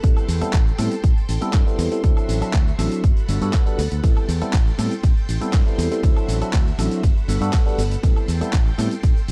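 This groovy, nostalgic filtered disco house excerpt at 120 BPM in A dorian opens at once with a punchy, tape-warm electronic kick up front, a bright fingered electric bass, a clean tine electric piano through a combo amp with phaser, lush sawtooth string-machine chords with a soft attack and ensemble chorus, and a gritty, overdriven sampler-style kit of hi-hat, ride cymbal, handclaps, cabasa and woodblock, while sidechain pumping moves the piano, strings, bass and the kit's hats, cymbals and percussion as the chords cycle through Am7, D9 and Gmaj9 in a dark production with digital ambience.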